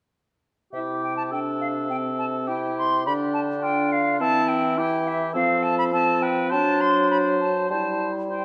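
At 0.7 s, a small woodwind group from the symphony orchestra begins together: a silvery concert flute, a soft-edged cor anglais and a mellow bassoon, with the clarinet joining at 0.8 s. This quick, spirited classical-period movement in C major moves at 103 BPM in 4/4, played with a graceful rubato. The flute sits highest and up front, its pure metallic tone shaped by vibrato, tongued notes and expressive phrasing, while the bassoon, also up front, supplies a low accompaniment with a light vibrato. Cor anglais and clarinet carry second lines in the middle register, sounding more distant and roomy, the clarinet's tone rounded and warm. The harmony passes from C through G, F and D7 before resting on C over G, and a moderate recital-hall reverb lends this passage, cut from a longer piece, a natural sense of space as all four parts play through to 8.4 s.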